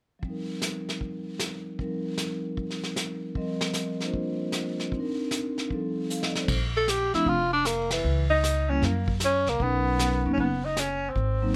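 Swinging and relaxed, this short cut from a longer small-group swing and bop piece moves at 154 BPM in 4/4 with a firm swing feel. It opens with a mellow, ringing vibraphone played with soft mallets, motor off, comping over F7sus4 alongside a vintage brush drum kit with dark cymbals, a punchy kick and a rolled-off top. After a drum fill ending at 6.5 seconds, the woody pizzicato upright bass enters as the harmony turns to Bb5, and a clear tenor saxophone with light vibrato takes the melody up front from 6.8 seconds. A band accent lands at 7.9 seconds, just before the chords slide through Dbmadd9, Gb and Bmaj7. From 8.3 seconds, a warm alto saxophone with a subtone and a distant, roomy quality adds a second line. The sound is close and detailed, with little reverb, so the intimate, dry character of the small group comes through clearly.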